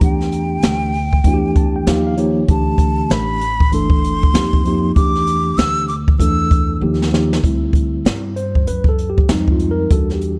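A dark, warm studio sound with reverb frames this nocturnal, cool jazz-hop excerpt, where a breathy, expressive concert flute with vibrato carries the melody until 6.8 seconds over a mellow tine electric piano that adds a fill early on and takes a solo from 7.4 seconds. Pizzicato upright bass gives a woody, thumpy low end, while an up-front brush drum kit with a boomy kick and airy polish swings on sixteenths and plays a fill just before the piano solo. The harmony drifts through jazzy seventh, ninth and suspended chords, opening on Em7 and closing on Fm7.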